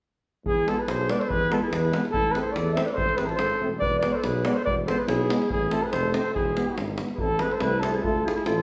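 Bittersweet and restless, this short Balkan brass band excerpt moves at 142 BPM in a straight 2/4, set in E phrygian dominant with tuning a little below standard pitch. A mellow flugelhorn carries the melody up front, while a clarinet with a warm, classical tone traces a second line just beneath it. A smooth-topped tuba with light vibrato anchors the bass from 0.4 seconds, joined by a deep, compressed and saturated davul driving the percussion. A soft-attack French horn and a euphonium with light vibrato sit in the background as accompaniment from 0.7 seconds, their distant, roomy sound blending into a wet recital hall reverb. The harmony rocks between E and Am until a brief new section opens at 7.2 seconds, then turns toward Dm near 8.0 seconds as the fragment breaks off.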